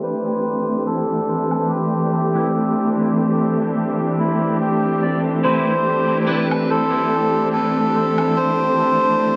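A reedy, breathy melodica carries the melody up front through the whole 9.4-second excerpt of this hazy, meditative ambient dub, its tone roughened by a vintage 12-bit sampler grit and trailed by dub echo. Beneath it, a dark symphonic string section holds sustained chords, bowed with vibrato and sounding lush and woody, as though heard from a distance yet still close in the mix. A barely audible, overdriven electronic woodblock enters at 1.5 seconds, and a very quiet, clean, twangy electric guitar adds picked stabs from 2.3 to 6.5 seconds. The music rests on a single Am7 chord in 4/4 with a swung sixteenth-note feel. A moderate spring reverb, a low-pass filter and a filter sweep across the full length give the production its murky, mellow glow.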